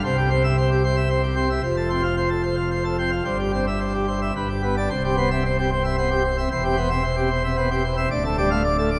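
A classical organ toccata in 3/4, this brief passage cut from a longer piece carries a majestic, dramatic character from its opening moment. A single pipe organ plays solo on full plenum, its mixtures giving a brilliant, baroque-voiced sound that sits up front. The part spans from the deep C1 up to F5, so the sound fills both the low foundation and the gleaming upper register. Harmonies move from C through F and C over G to G before settling back on C near 4.9 seconds, then pass through C over E toward D minor. The whole organ sound blooms in a wet cathedral reverb with a long 4.4-second decay, lending the playing a vast, resonant grandeur.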